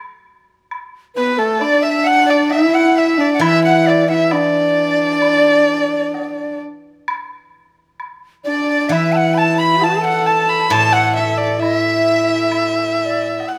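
A woodblock taps in at 0.7 s, and moments later a breathy bamboo dizi with a buzzing membrane enters at 1.1 s, followed at 1.2 s by an erhu carrying the melody and a husky, nasal horsehead fiddle, in this pastoral yet festive Chinese chamber piece that unfolds in a free, rubato feel. The intimate, up-front erhu sings with light vibrato, a soft attack and gliding portamento, while the dizi's tongued, unsteady tone and the earthy fiddle weave second lines around it. From 3.4 s a steel-string zither played with fingerpicks adds silvery, ringing accompaniment low in its range, all captured close and detailed in light reverb in this passage from a longer work.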